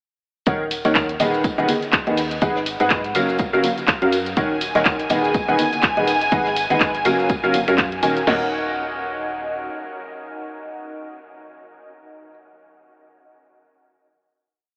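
A clear, woody upright piano leads this bittersweet, energetic piano house piece in Eb minor at 123 BPM, playing a dotted-rhythm chord riff colored by analog chorus, tape echo and sidechain pumping. The chords cycle through Ebm7, B6/D#, Abm7 and Gbmaj7 over a swung 4/4 groove. A round, dark FM bass follows the chord rhythm with fast-attack, decaying notes, while a punchy analog drum machine drives a four-on-the-floor kick with snare, toms and crash. A tape-warm garage kit adds programmed hats, ride, snaps, claps and shaker. Further back sit a very quiet brushed kit playing a looped breakbeat with edits and a ringing tambourine and conga part. A biting studio violin section with light vibrato enters at 4.4 seconds on a held high note. The drums fall away at 8.3 seconds, the bass drops out at 9.7 seconds, and the piano rings on until 12.3 seconds. The whole mix is soaked in a huge, dreamy reverb and given an AM radio sound.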